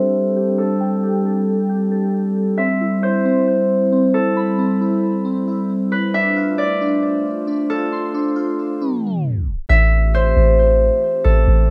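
Spacious and hazy, this half-time hip hop excerpt in A minor moves at 135 BPM over Am7, Cmaj7 and Dm7 chords. An up-front, bright Celtic harp rings out the fingerpicked melody through plate reverb and digital delay above a warbling, nostalgic tape-like pad with detuned chorus, while glassy digital keys spin arpeggios through a filter sweep until a tape stop arrives at 8.8 seconds. At 9.7 seconds the keys fall away and a deep, round 808-style bass enters up front, closing out a rough home-demo mix bathed in wet studio reverb.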